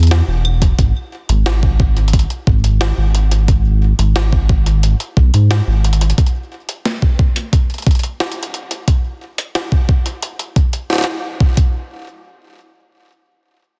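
Intricate and melancholic, this IDM fragment opens on a deep, rumbling detuned saw bass with tube saturation that sits up front until 6.1 seconds, while a gritty, pitched-up jungle sampler-style kit of claves, hi-hat and high-tuned snare carries small room ambience and digital delay, joined at 0.6 seconds by a thumpy, compressed electronic kick drum, set within digital ambience and a dense, heavily limited modern master.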